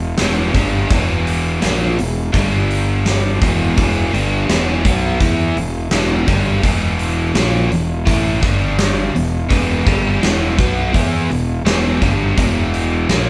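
Classic rock with a driving, swaggering mood, this excerpt from a longer piece moves at a steady, straight 4/4 pulse. A biting, overdriven electric guitar carries the riff, picked and double-tracked and sitting up front, moving between E5 and G5 power chords. Beneath it, a fingered electric bass with a dark, round fuzz tone holds down the low end, its overdrive heard both direct and through an amp. A huge arena drum kit enters at 0.2 seconds with hi-hat, a punchy kick and a fat snare, its acoustic, natural sound filling a big room up front in the mix. The band plays live together in one room under light reverb, giving the whole take a raw, physical presence.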